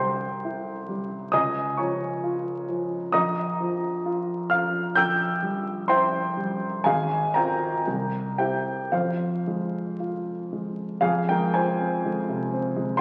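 Bittersweet and brooding, this romantic character piece for solo piano moves in a slow, rubato 2/4 at around 55-68 BPM in F minor, its harmony drifting through Db and C7 before settling on Fm at 8.9 seconds. A warm, up-front baby grand ranges from deep bass to high treble, set in a wet recital hall reverb. The sound carries the crackle of a very old 78 rpm record, and the 13-second excerpt is cut from a longer piece.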